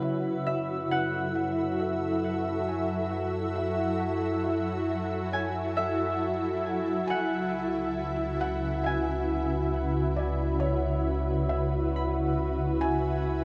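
A shimmering, ethereal pad sits up front from the opening in this serene, reflective ambient excerpt in F# minor at 68 BPM, holding sustained F#m7 and C#m7 chords through a huge, wet reverb, while a fingerpicked concert harp rings out arpeggios, a round, deep sub bass fades in beneath, and a soft, felt-muted upright piano drifts in with a delayed melody in the background, all colored by a cassette tape sound.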